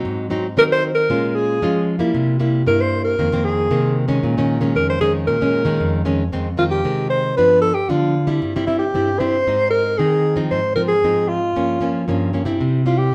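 Samba at 115 BPM in a straight 4/4, this short piece cut from a longer performance feels lively yet yearning, opening in B-flat minor before moving to F minor at 6.3 seconds. A fingerpicked nylon-string guitar carries the accompaniment from the very start, its acoustic, classical tone sitting up front across a range from the low register to the middle. A mellow alto saxophone joins at 0.6 seconds with the melody, played in a jazz style with vibrato, scooped notes and a smooth top, standing forward as the solo voice. The harmony moves through chords such as Bbm7, C7 and F7sus4 before shifting to Fm7, G7, Abmaj7 and Gm7b5, closing on C. The duo sounds like a band playing live in one room, wrapped in a wet stone room reverb.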